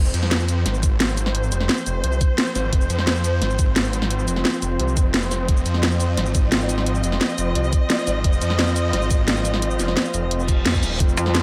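Dark technical drum and bass at 174 BPM in F minor, this tense excerpt sets distant, vibrato-laden chamber strings and a thick, detuned saw bass, both pumping under the sidechain, against an overdriven knocking kick, cracking snare and bright hats and shaker, while a deep, moody ambient pad drifts in at 2.1 seconds, a reverse cymbal sounds at 10.4 seconds, and a metallic, aggressive wobble bass bursts in at 11.2 seconds.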